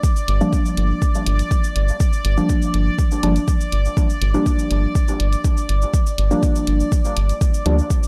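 Dub techno at 122 BPM in G minor, this meditative, hypnotic excerpt sits on a single Gm7 chord, with a deep, up-front electronic kick and a faint layer of electronic cabasa and hi-hat, both re-recorded in a small room. A round, dark analog bass enters at 0.3 seconds and pumps against the kick, while deep, mellow chord stabs arrive at 0.4 seconds with a nasal, full-bodied tone, decaying under chorus, phaser, cassette tape colour and dub echo. Above them a bright, resonant texture bubbles through random filter steps with chorus and its own reverb, the whole set in light reverb.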